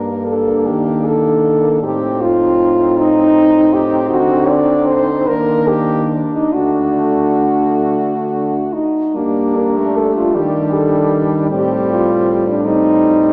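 Classical and lyrical, this melancholic, yearning passage for horn quartet moves in a rubato 6/8 at about 45-54 BPM (dotted quarters), drifting through a chord progression from Gm toward Am7b5. Up front, a clear French horn with light vibrato carries the melody between D4 and D5, while a warm, softly attacked horn sings a second line in the background, and a third horn with light vibrato supplies the accompaniment. A mellow, close-miked horn anchors the bass, and a wet church reverb with a 3.0-second decay surrounds the group through the full 13.3 seconds of this excerpt from a longer piece.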